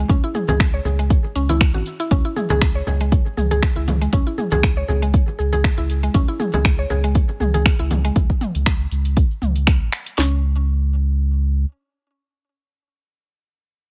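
Spiritual and hypnotic, this afro house excerpt in C# minor moves at 119 BPM with a light swing, built on woody, FM-toned mallet-like synth pluck arpeggios colored by chorus, cassette tape grit, tape echo and sidechain pumping, over a deep, round sine sub bass that pumps up front. Overdriven electronic drums drive it, with a punchy kick and cracking snare forward in the mix, bright hi-hats, finger snaps, shaker and toms, while ringing, low-tuned acoustic congas played with soft hands sit close and dry until 8.0 s. Everything sits in a digital ambience, and as the drums and pluck fall away around 10.2 s, the sub bass carries on alone until 11.7 s.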